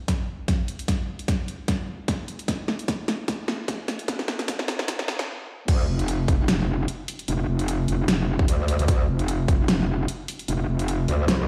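Played through a big sound system in a bare room, this heavy wobble dubstep excerpt carries a large studio reverb and a high-pass filter, setting a chaotic, menacing mood at 150 BPM in a half-time 4/4 feel with light swing, in D minor. An up-front dubstep drum kit with a huge snare, bright hi-hats, crash cymbal and a tape-warm finish drives a build-up of a drum fill and filter sweep alongside a punchy, overdriven electronic kick, until a brief stop at 5.3 seconds. At 5.7 seconds the drop arrives as a metallic, aggressive FM wobble bass enters, saturated and compressed with chorus and overdrive, carrying through to 11.5 seconds.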